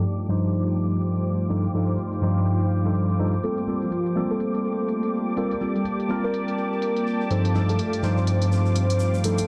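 A mellow analog pad with chorus and 12-bit grit opens this moody deep house excerpt at 124 BPM with a 16th-note swing, alongside worn, slightly out-of-tune tine electric piano stabs, filtered smooth hi-hats, a blurred granular cloud pad, a silky string machine held on D6 and a grainy egg shaker in the background, with filter sweeps running throughout, vinyl crackle and a dense, heavily limited master, until a velvety, dark synth lead with tremolo and dub echo enters at 3.4 s over chords moving from F7/G to Gm11 and back.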